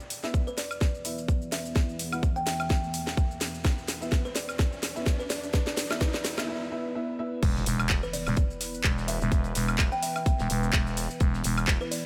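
Set in a small room with light reverb, this aggressive, swaggering bass house passage at 127 BPM on an E5 chord builds over a chorused, sidechain-pumped sawtooth pad with a bright filter swell, a tight tape-warm kick, a house kit with cracking snare and metallic hats, and a background riser. Above them, a soft, woody kalimba melody rings through dub echo while a dark, boxy grand piano stabs through the break until 7.4 seconds. At 7.4 seconds the drop hits with an impact, a thick, growling FM bass driven by overdrive and sidechain pumping, and a very quiet, dry 70s kit with a fat snare.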